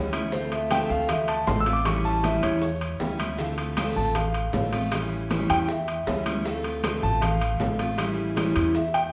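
Latin Cuban son in a guajira vein, this nostalgic, danceable passage cut from a longer piece features a warm concert grand piano soloing in arpeggios high in its range, its smooth, intimate tone carrying audible action noise over a Dm7 to A7 vamp. A bright, full-bodied steel-string acoustic guitar sits up front with finger squeak audible, while a woody, thumpy pizzicato upright bass anchors the low end. Ringing high-tuned congas, saturated metal-shell timbales, grainy maracas and very quiet, band-limited bongos fill out the percussion, all caught as a band playing live in one room with a wet studio reverb.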